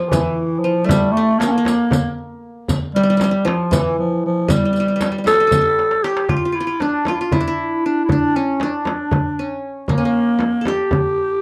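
A straight 7/8 pulse at 234 BPM in eighths drives this longing, soulful Turkish makam ensemble passage in G makam nikriz, cut from a longer piece. Up front, a raspy, growling clarinet carries the melody with vibrato, scooped notes and a jazz-style gritty edge, while a bright qanun, played with fingerpicks on its triple strings, traces a second line. A crisp, high metal-shell darbuka and a soft-handed frame drum hold the rhythm, joined by a distant riq's jingles until 6.1 s, with a drum fill from 5.8 to 6.3 s leading into the next section, all captured with close, detailed microphones and light reverb.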